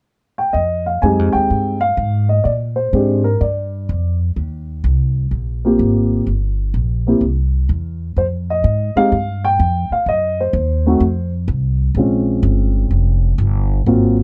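A dark, mellow upright piano carries the melody from 0.4 s, joined almost at once by a woody, growly pizzicato upright bass with steel strings, both placed up front in this smoky, moody jazz piano trio piece in F minor. The swung 4/4 moves at 126 BPM through harmonies such as Fm9, Bb13 and Eb69, shifting around 8.2 s to a passage built on Fm9, Cdim and Bbm9. Light reverb and a dark, warm production give the smooth piano and acoustic bass a shadowy glow in this section cut from a longer piece.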